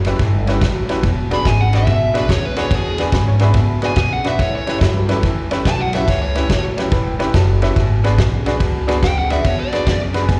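A small room ambience folds into the echo of a recital hall, as if this gritty, rollicking electric blues shuffle were a live gig heard through the venue's PA. At 143 BPM with a moderate swing in E, it opens on a growly, pizzicato upright bass with steel strings and a fat-snared, dry soul drum kit sitting up front, its tight kick, ride and dark cymbals driving the groove as the chords move between A7 and E7. A bright upright piano with audible action noise and long sustain fills in the accompaniment with slapback echo, while an electric guitar through a small old amp plays a slightly broken-up, lo-fi riff bathed in spring reverb. From 1.3 seconds a dark, overdriven lead guitar carries the picked melody. Between 3.0 and 7.9 seconds a second, worn and slightly detuned upright piano adds a quiet line in the background, and the first piano closes this excerpt with a short fill at 9.9 seconds.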